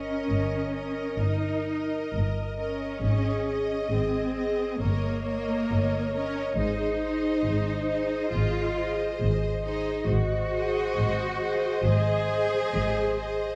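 A serene, lyrical slow romantic orchestral passage, cut from a longer piece and shaped with gentle rubato, opens with up-front cellos and double basses anchoring the low end beneath a smooth viola accompaniment, while a lush violin section with vibrato carries the melody in the background, a more distant, focused violin section, a mellow solo clarinet and a very quiet, pure-toned flute ensemble weave second lines, and a soft-attack French horn section holds sustained chords, set in a dark production with moderate recital-hall reverb.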